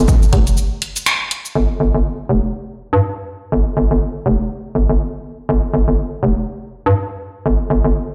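A swung sixteenth-note groove in four drives this cool, clinical minimal techno fragment, cut from a longer piece. A punchy analog drum machine plays cabasa, finger snaps and hi-hat, dry and overdriven and placed up front, from 0.1 to 1.5 seconds during the opening drop, with a band accent landing at 1.1 seconds. A hollow, knocking FM bass runs from the start to 7.9 seconds in a low register. Its fast attack and decaying notes give it a bouncy character, and sidechain pumping makes it breathe against the beat. After the drums stop, the bass carries the longer second section by itself. The sound is of a big sound system in a bare stone room, with light reverb lending a stark, echoing space.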